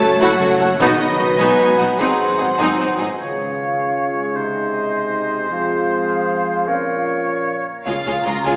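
In a straight 6/8 at 102 BPM, this soaring, triumphant cinematic excerpt opens with a lush symphonic violin section carrying the melody over an intense chamber violin second line, rich violas, focused cellos and double basses, mellow trumpet stabs, and soft, round timpani in the background. French horns hold sustained chords while a ringing concert harp plays arpeggios all the way through. At 3.2 s the strings give way to an airy flute ensemble, a distant clarinet and an up-front oboe over roomy trombone chords until 7.7 s, and the strings return at 7.9 s, all set in a wet scoring-stage reverb that sounds heard from further back through a small speaker.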